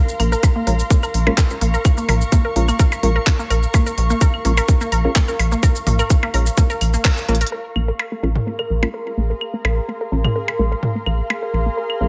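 Minimal techno at 127 BPM in Bb minor, cool and clinical, this excerpt rides a tight, up-front kick that drops out at 7.1 seconds, a rubbery square bass with sidechain pumping and tube saturation, crisp filtered hats, handclaps and shaker from a garage kit, delayed claves, blips and toms, a squelchy resonant blip pluck riff through tape echo, digital wavetable chord stabs under a filter sweep, and an ethereal, airy pad, before a drum fill at 7.3 seconds hands over to a Bb7 passage where a bubbling stepped-filter texture enters in the background at 7.5 seconds.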